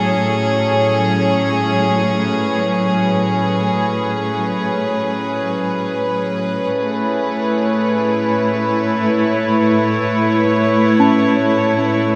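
Warm and weightless, this free-time ambient fragment in A major rests on an up-front bowed string section with a reedy, gut-string, period-style tone and light vibrato, holding sustained chords through a low-pass filter and shimmer reverb, while a rich, smooth cello section anchors the bass on A2 throughout. The harmony moves from F#m/A to Amaj7 at 6.7 seconds. At 11.0 seconds a delicate, bell-like celesta with soft felt hammers adds gentle arpeggios washed in diffuse ambient delay and shimmer, and the whole passage sits in a huge, wet reverb with an 8.2-second decay.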